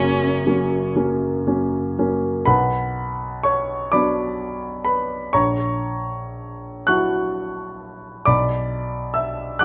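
Solemn and melancholic, this romantic classical duo for cello and grand piano moves slowly in 6/8 with a rubato feel in B minor, cut from a longer piece. A rich, focused cello with vibrato and a smooth top sounds only briefly at the start, holding a single melody note, while the warm concert grand carries the accompaniment through to 9.6 seconds, ranging from deep bass to high treble in a natural, up-front sound. The harmony moves from F# through B minor and F#7 over A# back to B minor, all bathed in the wet reverb of a large studio.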